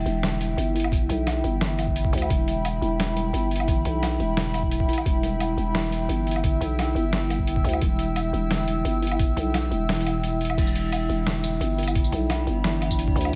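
A heavy, tense half-time drum and bass groove rides on a gritty, pitched-down, sampler-style kit of snare, hi-hat, crash, tambourine and woodblock, with a thumpy electronic kick that briefly drops out from 9.9 to 10.6 seconds. A growling, buzzy 808-style bass sits up front beneath a deep, detuned analog pad with chorus and sidechain pumping, while a woody, plucked kalimba plays soft arpeggios in the background through 12-bit sampler grit and tape echo. At 12.2 seconds an eerie, metallic FM drone with chorus and phaser enters in the background, and the whole dreamy mix is soaked in plate reverb in this cut from a longer piece.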